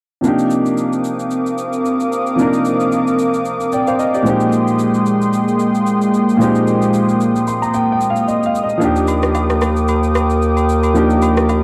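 A swung 16th-note amapiano groove in 4/4 rides on layered electronic shaker and rim click, setting a deep, hypnotic mood in this short excerpt, with a detuned sawtooth analog pad holding mellow, slow-attack chords with chorus up front beside an intimate concert grand piano whose action noise and deep bass are clearly audible. The piano slips in a fill at 7.2 s before a dark, smooth-topped bass clarinet enters up front at 8.8 s as the harmony moves from minor-eleventh and suspended colours to a major-seventh chord, joined at 9.1 s by close, dry agogo bells and woodblock in the background. Cassette tape softens the piano, pad and drums, and the whole sits in a small room with the feel of a home recording.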